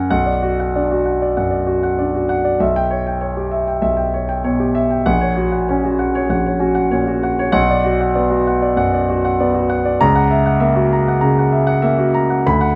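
Pushed and pulled in a free rubato around 97 BPM in 4/4, this stormy, passionate romantic character piece in B minor gives a solo concert grand piano the whole 12.8 seconds, ranging from A#1 up to B5. The piano sounds natural and up front, with a deep bass and a touch of light reverb, as its harmony moves from Bm through C#m7b5/B and F#/A# before returning to Bm and closing on F#7/C#. It is a short cut from a longer piece.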